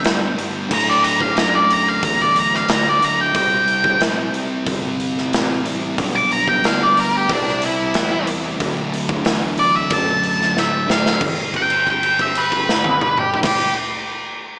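Swaggering and driving, this blues rock and southern rock clip in G major moves at 92 BPM in a straight 4/4, with a double-tracked, dark fuzz rhythm guitar riff over a growly fingered bass sitting in the background and a big acoustic drum kit with a punchy kick and bright cymbals. An up-front octave-fuzz lead guitar solos with slapback echo over chords moving through G, D, C7 and C, until a drum fill at 10.6 seconds. At 11.2 seconds the riff guitar drops out as the chords return to G and the lead holds a long note, all bathed in lush hall reverb for a big arena sound.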